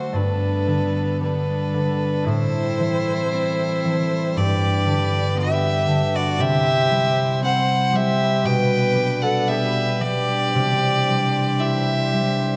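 Drifting in free rubato around 57 BPM in 4/4, this wistful, tender Celtic slow air is cut from a longer piece. A clear, focused fiddle with light vibrato carries the melody up front, while a second, darker fiddle with a nasal, woody tone traces a lower line beneath it, and a ringing, fingerpicked concert harp sits forward in the mix, moving through chords from Gadd9 and Am7 to a closing Cadd9. Behind them, a rich studio string section holds soft-attacked, floating sustained chords, and the whole ensemble is set in a wet recital hall reverb.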